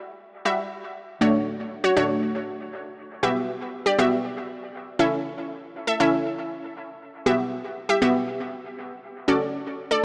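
A punchy, detuned unison pluck, bright and up front with a sub octave, ring modulation and a dub echo, enters at 0.5 seconds as the only part in this summery, carefree pop piece at 119 BPM in D major, tuned to A4 = 445 Hz, where a short build-up gives way to a drop at 1.2 seconds over Emadd9, Dmaj7 and A chords, all bathed in a lush hall reverb and a dark production.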